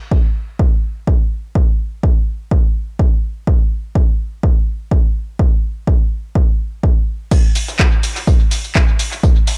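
House excerpt at 125 BPM with a light swing, trippy and hypnotic, opening on an up-front, punchy analog kick drum recorded in a small room before a drop at 7.3 seconds brings in an analog drum machine with crash cymbal, handclaps, hi-hat and shaker through analog delay, alongside a very quiet, gritty, tape-warm sampler-style soul kit of hi-hat, medium-tuned snare and tambourine in a large room, all within an echo-heavy digital ambience.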